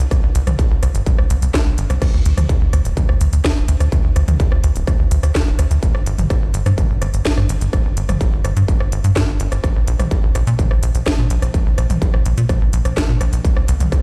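A straight 4/4 pulse drives this hypnotic, melancholic melodic techno excerpt, where a distorted electronic kick re-recorded in a large room sits up front beside a tight, punchy sawtooth-and-square sequencer bass with filter plucks, a moving notch, tube saturation and sidechain pumping, while a quieter, overdriven techno kit adds a cracking snare, smooth hi-hats, rim clicks, toms and crash cymbal, all heard as if played on a big sound system in a bare stone room with lossy compression artefacts.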